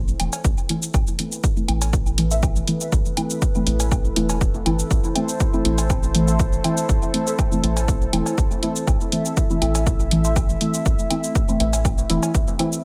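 Dub techno in A minor at 121 BPM, nocturnal and deep, with a lightly swung 4/4 groove built on a punchy, up-front electronic kick, a tape-warm shaker and hi-hat, and a round, soft sub bass that pumps to the sidechain. A detuned sawtooth pad holds moody sustained chords above a warbling, vintage chord stab dressed in chorus, phaser, cassette-tape colour and dub echo, while woodblock and cowbell tick in the background through their own echo. A muted, filtered dub stab with lush chorus and a filter sweep flickers in at 2.3 seconds and returns from 6.3 to 10.4 seconds, all set in light reverb and digital ambience in this cut from a longer piece.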